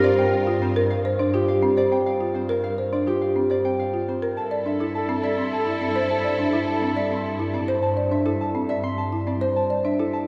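An up-front, woody folk marimba plays arpeggios through this hypnotic, meditative excerpt of minimalist classical pattern music in 3/4 at 104 BPM, while a ringing, fingerpicked concert harp carries the melody above it. A bowed double bass section holds a soft-attacked G2 beneath. A smooth clarinet second line and a lush, distant string section with sustained chords sound briefly at the start and return at 4.4 s, as the harmony moves from Gm7 to Am/G, with a wet church reverb surrounding the ensemble.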